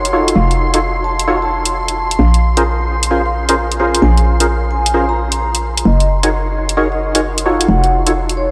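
A two-step garage groove in 4/4 swings its sixteenths, carried by an up-front, layered electronic hi-hat and a hollow, knocking FM bass that bounces with a punchy, fast-decaying attack. Percussive organ stabs sit forward in the mix, mellow and sine-toned with a noise layer, thickened by ensemble chorus, gritty vintage 12-bit sampler texture and tape echo. Behind them, a soft string machine holds silky, warbling sustained chords that bloom slowly and linger on a long release, while a vibraphone with medium mallets plays a metallic, ringing melody from 0.4 seconds, its slow motor vibrato trailed by tape echo. The harmony moves from F7b9b13 to Bbm9 at 2.2 seconds and Gb69 at 5.9 seconds before returning to F7b9b13. The whole mix is soaked in a cathedral-like reverb, giving this moody, late-night fragment of a longer piece a dreamy, drifting atmosphere.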